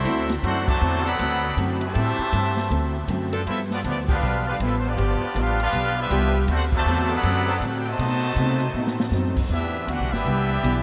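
A brilliant trumpet section carries the melody from the first moment, with a muted trombone section beneath it on a nasal second line, both trailed by tape echo, while a very quiet, bright saxophone section holds sustained chords until 7.6 seconds. This is swinging, brassy big band jazz in D major at 159 BPM, cut from a longer piece. An up-front upright bass with a woody pizzicato tone anchors the bottom, and a picked acoustic archtop guitar adds boxy accompaniment. A swinging drum kit with dark cymbals, a medium-tuned snare and a punchy kick drives the time. The full band hits accents at 0.6, 4.0 and 6.7 seconds, and a short drum fill lands at 8.8 seconds as the harmony moves through B7b9 to Em7. A huge ambient reverb soaks the mix in a dreamy haze.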